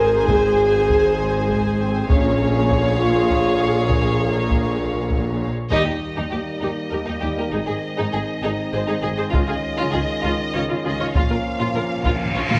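Heard through worn, warbling old tape with a drifting pitch and a moderate scoring-stage reverb, this excerpt from an epic, heroic orchestral film score moves at 66 BPM in 6/8, its adventurous mood settling into Eb mixolydian from 5.7 seconds. Lush bowed violins carry a distant, expressive melody over a second violin line with a smooth top, while focused violas, background cellos, intense double basses and a mellow tuba fill out the harmony and low end beneath tight French horn chords. Close, dry taiko pound with heavy sticks, trombones join with sustained chords at 5.7 seconds, and calf-headed timpani at 11.2 seconds lead into a huge, dark cymbal swell.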